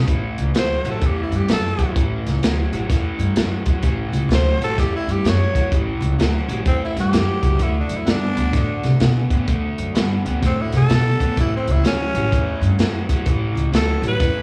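An electric blues shuffle excerpt with a rollicking, laid-back swing, where a raspy, growling tenor saxophone carries the melody over an overdriven garage guitar riff with slapback echo on both, a woody, thumpy pizzicato upright bass, and a crunchy, saturated breakbeat kit with a tight kick and rolled-off top, all heard through a small club's PA with reverb as the chords move from A5 to D5 at 7.6 seconds and back to A at 11.4 seconds.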